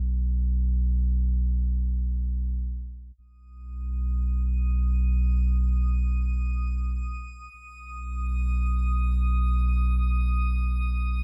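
A round, deep analog bass with tube saturation sits up front on a low B through this peaceful, luminous ambient passage in free time and B major, cut from a longer piece, while a glassy texture of drifting overtones, softened by chorus and shimmer reverb, fades in quietly from 4.2 seconds above a dark, dry production.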